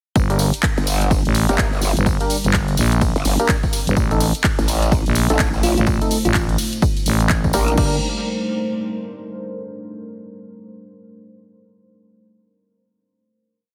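A swaggering, bouncy bass house piece at 126 BPM in G minor opens at 0.2 seconds straight into the drop, with a punchy, tape-warm four-on-the-floor kick, a house kit of closed and open hats, ride, claps and crash, and a jingly, close tambourine playing hand-played sixteenths in the background, all riding a 60% swing on the sixteenths. A thick, growling FM bass sits up front with chopped phrases low in the register. It is soon joined by a second, aggressive bass that wobbles through a formant filter with changing wobble speed, saturated and compressed, answering the first. Hollow, organ-like stabs drop sparse, echoing chords in close voicing, and a deep, moody pad enters at 2.2 seconds with slow-blooming detuned chords, both pumping against the kick as the harmony moves from G minor to A diminished and back. At 5.6 seconds a sparkling, bell-like FM electric piano adds a short answering phrase through chorus, phaser and delay before a final G minor chord rings out from 7.8 seconds. 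The mix is dry and heavily compressed, with a loud, radio-like punch.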